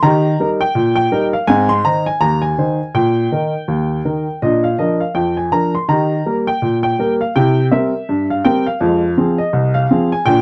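Cheerful and jaunty, this short ragtime piano passage is cut from a longer piece and moves at an easy 82 BPM in 2/4, with a light swing on the sixteenth notes. A solo upright piano carries everything from 0.0 to 10.4 seconds, ranging from C2 up to C6 with a woody, natural tone and long sustain that sits up front in the mix. The harmony stays rooted in E-flat major, stepping through Eb, Ab and Bb before turning toward C7 and closing on Fm. The piano is tuned slightly low, to A4 = 436 Hz. The sound is dry and close, in the manner of a 1970s studio recording, with only a light touch of reverb around the piano.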